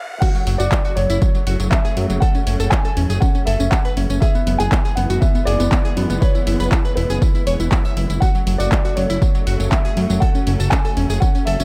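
Driving and bittersweet, this progressive house cut at 120 BPM in F# minor drops in at 0.2 seconds with a punchy, up-front electronic kick and a pop kit of crash, handclaps, hi-hat and tambourine, while a fat analog bass joins at 0.5 seconds beneath a dark, boxy grand piano melody with audible action noise, glassy wavetable pluck arpeggios with chorus and dub echo, and lush, distant strings holding chords, the piano, pluck, strings and bass all pumping to the sidechain as the harmony moves from F#m to E/F# and back.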